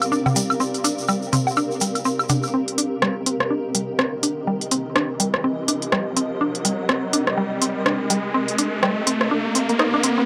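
A dry, gritty hardware sound with a small room's moderate ambience gives this hypnotic, cool cut of minimal techno its close, slightly rough character, moving at 124 BPM in 4/4 with a 16th-note swing over a Cm7 chord in C minor. Up front, a minimal click drum kit of clicky hi-hats and rim clicks runs throughout, joined at the start by dry analog woodblock and toms and a grainy, acoustic egg shaker. A woody, round, mallet-like FM pluck carries the riff in a low register, its short, percussive notes treated with chorus and tape echo. Behind it, a cloudy granular pad slowly evolves with blurred, detuned unison and a moving notch, while a faint, tempo-synced gated texture pulses brightly in the background. The shaker, woodblock and toms and the gated texture drop away around 2.5 seconds, where a build-up begins with a filter sweep on the pluck. An electronic riser enters at 3.9 seconds and carries the build to the end of the excerpt.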